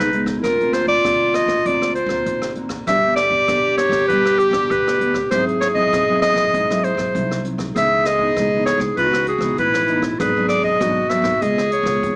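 A bright, up-front clarinet carries the melody in classical style, while a clear, close-miked second clarinet sings a lower line beneath it throughout this joyful, playful samba and choro excerpt in a straight 4/4. A thumb-plucked nylon-string guitar supplies warm accompaniment, moving through jazzy harmony that opens on D7alt and passes through Gmaj7, C#m9 and G#m7b5 before settling on C#7. A woody pizzicato upright bass on steel strings sits in the background, and a jazz brush kit joins at 0.1 seconds with hi-hat, rim clicks and a boomy kick. The players share a moderate large-studio reverb, yet the overall sound comes across as if heard through a small speaker.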